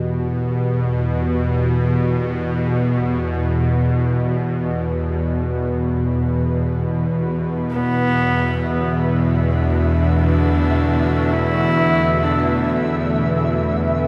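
A sweeping, airy sawtooth pad fades in from the background beside a tense, string-like drone held up front, opening this desolate, dark ambient drone fragment in free time and E minor, tuned to A4 = 438 Hz; a husky, earthy horsehead fiddle enters at 7.7 s with a smooth-topped, gliding melody through shimmer reverb and delay as the harmony shifts from Em to Bm7/E, and a flickering, grainy texture joins high above at 8.2 s, the whole piece suspended in a vast, echoing space.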